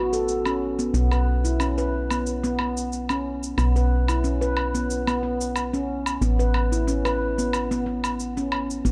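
Organic downtempo with a meditative, hypnotic pull, built on lightly swung sixteenths: up-front handpan arpeggios ring out with a mellow, vintage steel tone through a low-pass filter and digital delay, a soft, round FM bass with a woody, quickly decaying pluck sits low beneath them, and a muffled, tape-warm shaker and woodblock, re-recorded in a small room, ticks quietly behind, all in a dark production with light reverb and digital ambience.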